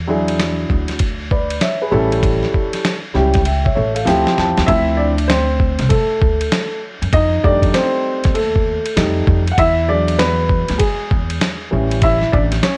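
A swung sixteenth-note groove in four sets the pace for this smoky, cool jazz-hop cut, taken from a longer piece. A dusty, sampler-style soul drum kit sits up front, compressed and gritty, with a thumpy kick, a medium-tuned snare, hi-hat and ride cymbal. A pizzicato upright bass with steel strings adds a woody, low foundation beneath a dark, mellow grand piano, also placed up front, whose extended jazz chords move through E9, A7 and Dm11. Around 3.5 seconds the piano plays a fill, joined by a brief drum fill, and from 4.7 seconds the piano takes a solo over the rest of the clip while the harmony cycles through Dm9, F9, E9 and A7. The recording carries a small-room ambience and the worn, warbling pitch drift of old cassette tape.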